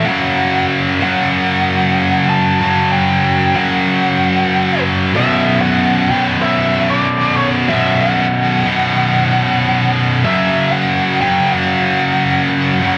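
A scooped, high-gain rhythm guitar sits up front in this relentless, aggressive metal fragment, double-tracked and picked, with a bright, distorted bite as it drives a low riff from B1 to F#3 through the full 13 seconds. At 94 BPM in 4/4 with a straight, half-time feel, the riff moves from an F#5 power chord to B5 at 5.2 seconds and back to F#5 at 10.3 seconds. Above it, a picked high-gain lead guitar with a warmer, distorted tone carries the melody between C#5 and A5, sitting somewhat lower in the mix than the riff. Both guitars carry the hazy grit of cassette tape. The home recording has a light reverb, and the tuning rests slightly sharp at A4 = 441 Hz.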